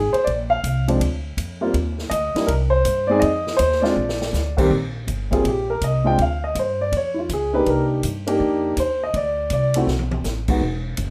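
A deep-voiced grand piano with long sustain leads this brief, sophisticated jazz trio cut at a swinging 162 BPM, taking a solo from 4.7 s over a thumpy, woody pizzicato upright bass on gut strings and a big-band drum kit with a punchy kick and medium-tuned snare that adds fills at 4.0 s and 9.9 s, all set in a rough home demo mix with wet studio reverb.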